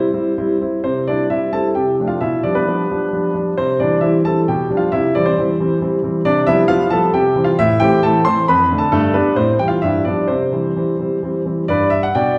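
Bathed in a wet recital-hall reverb, a clear, up-front concert grand with deep bass and long sustain plays a graceful, cheerful classical-period sonatina alone in C major, tuned to A4 = 442 Hz, moving in a rubato 3/4 at 133 BPM through tonic, dominant-seventh and brief A minor harmonies before this short cut from a longer piece comes to rest on G at 11.7 seconds.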